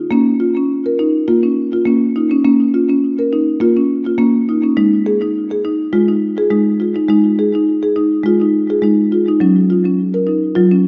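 The rhythm moves at 103 BPM in 4/4, with a light swing on the sixteenth notes that gives the pulse a gently rolling lilt. This short passage from a longer piece is gentle, hypnotic meditative world music in Bb minor, tuned slightly sharp to A4 = 441 Hz. A marimba played with soft mallets carries everything alone for the full 10.9 seconds, ranging from Gb3 to Bb4. Its padauk bars sound woody, round and mellow, close-miked and up front, with a touch of delay trailing its notes. The harmony rests on Bbm, shifts to Ab5 at 4.8 seconds and settles on Gb5 at 9.4 seconds. A moderate echo-chamber reverb and studio ambience place it in a calm, intimate space.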